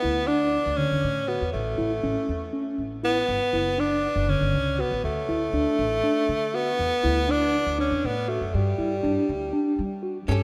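An edgy tenor saxophone with light vibrato carries the melody up front from the start, its line trailed by delay, while a mellow tine electric piano spins clean arpeggios and a woody pizzicato upright bass anchors the low end in this driving, intricate progressive instrumental in 7/8. The chords move through E5, A, a rootless Gmaj7, D5 and G5, all set in a lush hall reverb with the rough feel of a home demo mix. At 10.3 seconds a dark, double-tracked archtop guitar appears only briefly before this cut-down extract ends.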